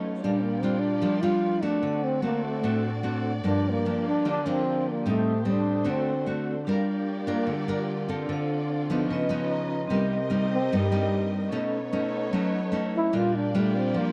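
Through a dark production with light reverb, this intimate, smooth bossa nova excerpt puts a breathy, whispered trombone melody with scooped notes up front, stretching into a solo from 6.7 s. Beneath it sit full-bodied fingerpicked nylon-string guitar and a bright, ringing vibraphone in the background that adds a brief fill at 9.1 s, while a lush bowed violin section holds sustained chords with portamento.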